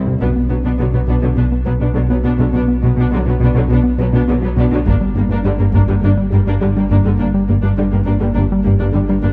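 Tense and vast, this 103 BPM B minor hybrid orchestral and electronic film-score fragment moves from Bm to Gm at 4.9 seconds as a bouncy, wave-folded square bass riff and a thick, saturated sub bass drive beneath lush bowed violas, distant cellos and woody double basses, while a dark, harp-like synth pluck with chorus and tape echo ripples arpeggios in the background, a very quiet taiko ensemble strikes from 0.1 to 1.4 seconds and again near 4.9 seconds, and a scoring-stage reverb and worn cassette warble cast a drifting haze over the whole recording.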